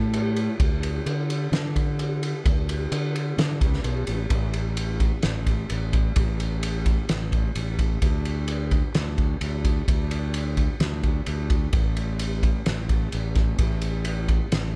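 A fuzzed, overdriven fingered electric bass opens this hazy, dreamy shoegaze and dream pop rock fragment, joined at once by a loose indie drum kit in a pumping room with a fat snare, punchy kick and dark ride cymbal, both parts sitting up front in a dry mix that shifts into a new section at 4.3 seconds.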